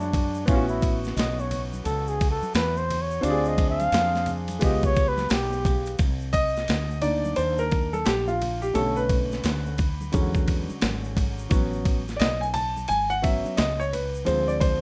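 Nocturnal and mellow, this jazz-hop excerpt from a longer piece swings gently as a breathy, lightly vibrato flugelhorn with slapback echo carries the melody until 6.0 seconds, when a polished grand piano with long sustain takes the solo over rich extended chords, all above a round, woody fretless electric bass, a thumpy, gritty sampler-style drum kit with vintage 12-bit crunch, and ringing tube shaker and congas sitting in the background of a rough home-demo mix with light reverb.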